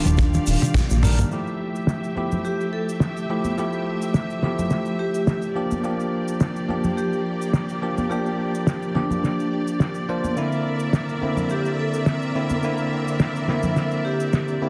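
This nu-disco excerpt has a sunny, feel-good mood, with a lightly swung groove cut from a longer piece. A bell-like, clean tine electric piano sits up front with a slapback echo, while a metallic vibraphone rings softly in the background through an analog delay. A rich, bowed studio string section holds smooth chords with vibrato, softened by a low-pass filter and pumping from sidechain compression. A glossy, retro synth bass with chorus and a mellow pulse-and-sawtooth tone plays only until 1.2 seconds, and a tight, dry kick drum appears briefly up to 0.9 seconds during an opening drum fill that runs to 1.3 seconds, with a band accent inside that fill. The damped 70s kit, with a fat snare, hi-hat, shaker and toms, keeps going under low-pass filtering, joined by close congas and cabasa played with soft hands. A lush hall reverb and studio ambience surround the parts, and the master is dense and heavily limited.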